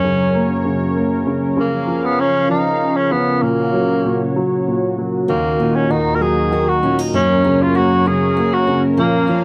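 A breathy tenor saxophone leads this tender, heartfelt pop fragment in F# major, singing a mellow, jazz-style melody up front with vibrato, subtone, scooped notes and a soft, whispered attack. Beneath it, a polished grand piano with short sustain plays a present accompaniment, while a smooth, detuned sawtooth analog pad holds sustained chords with a long release and chorus. The music moves at 65 BPM in a straight 6/8, passing through F#, A#m, F#/A# and D#m before returning to F#. At 5.3 seconds a fingerpicked jumbo steel-string acoustic guitar joins in the background with bright, full-bodied arpeggios, its fresh strings giving off finger squeak and a slapback echo. The dry, close recording has a vintage 1970s studio character, with moderate reverb giving the intimate saxophone and the other parts a little space.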